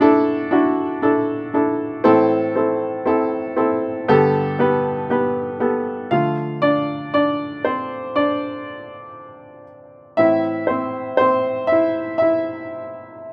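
In a straight, slow 4/4 at 59 BPM, this hopeful, emotional pop fragment from a longer piece features a clear, woody upright piano with short sustain sitting up front, moving through Dadd9, Am and Gadd9 before a second passage from 6.1 s turns to Dm and Am, heard with moderate small-room reverb in a rough home demo mix.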